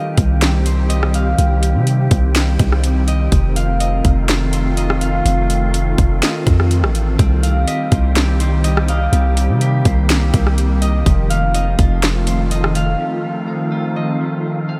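A fingerpicked Celtic harp rings out with tape echo over a glassy FM pad with ensemble chorus and sidechain pumping, while a breathy, wind-like noise texture sits in the background, opening this ethereal, spacious half-time cloud-rap excerpt built on Cm and F7. Almost at once a deep, sine-toned 808 bass and an up-front trap kit arrive, the kit bringing a hard-clipped kick, sharp snare, rim click and metallic hats. A clean, compressed electric guitar with lush chorus joins with picked arpeggios at 7.2 seconds, and the bass falls away at 13.0 seconds, just after the drums, leaving a short break.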